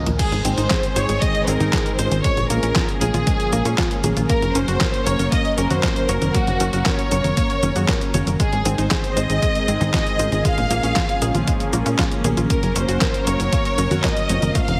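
Heavily compressed, radio-style sound with light digital ambience frames this bittersweet, danceable italo disco passage cut from a longer piece, which opens on a drum fill before a smooth, vibrato-rich symphonic violin section carries the melody up front over a dry, punchy electronic kick, an overdriven, sampler-style 8-bit drum machine with snare, handclaps, congas, cabasa, hi-hat, toms and crash, and a tight sawtooth sequencer bass, while a thick, chorused unison pad, a worn, slightly out-of-tune tine electric piano playing stabs and a round, detuned analog pluck tracing delayed arpeggios sit in the background over chords cycling through Ab, Bbm7 and Gb.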